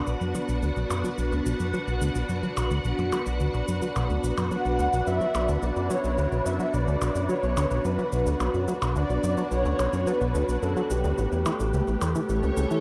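A huge, wet reverb with a long 7.8-second tail surrounds this hypnotic, mysterious piece of ambient, sequencer-driven space music, heard here as a section cut from a longer work, moving at 108 BPM in a straight 4/4 in B minor with tuning at A4 = 436 Hz. Up front, a lush vintage string machine holds full ensemble chords with a slow attack, colored by phaser and ensemble chorus, while a dark, wind-like tuned noise texture sits in the background on a single B4, airy and drawn out with its own built-in reverb. A punchy, funky analog bass riff of sawtooth and square waves, carrying a filter sweep throughout and a tape echo, drives the music from its fast-attack, decaying plucks. Electronic cabasa and percussion blips, re-recorded in a large room and trailed by tape echo, add percussive color. At 4.5 seconds a soft, breathy flute-like lead enters with vibrato, chorus and tape echo, carrying the melody over a harmony that rests on Bmadd9 before shifting to A7 at 11.2 seconds.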